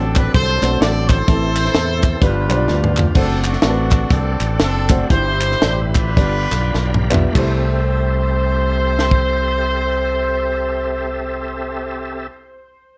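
A tight funk drum kit swings its eighth notes in 4/4 at 96 to 128 BPM, with a high-tuned snare and a tight kick, crisp, dry group handclaps beside it, and drum fills at 2.7 and 6.7 seconds; the tempo slows through the middle of this fragment. This is soulful, uplifting uptempo gospel in C major, with a growly, bright fingered electric bass sitting up front beneath a warm concert grand piano that plays deep-bassed, short-sustained accompaniment. An overdriven tonewheel organ holds gritty, thick chords through a fast rotary speaker and chorus vibrato, its percussive second-harmonic click adding bite. Carrying the melody, a clear jazz-style horn section plays as a tight unit with a soft attack and light vibrato, sounding distant and roomy with tape echo trailing its lines. The handclaps drop out at 7.7 seconds and the drums at 9.2 seconds, leaving the horns, piano, organ and bass to settle onto a closing C6 chord in a small room with light reverb.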